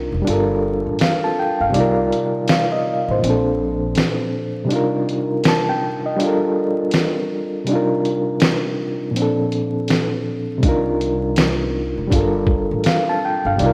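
A rough home-demo mix with vinyl crackle and a lush hall reverb frames this melancholic, reflective lo-fi hip hop fragment, cut from a longer piece and set in a loping 4/4 with a swung sixteenth feel. Up front, an overdriven reed electric piano carries the accompaniment throughout, its reedy, barky, gritty tone pushed through a combo amp with a fast tremolo and a cassette-tape color, cycling through jazzy minor ninth, eleventh and major seventh chords. A lo-fi sampler-style drum kit joins at 0.3 seconds with hi-hat, a thumpy kick and a medium-tuned snare, sounding compressed, muffled and tape-warm, as if re-recorded in a large room. A woody, dark upright bass with gut strings plucks low notes at the opening, drops out at 3.9 seconds and returns at 10.6 seconds. During the break the kick falls silent for a stretch before the bass comes back, giving the loop a hazy, wistful pull.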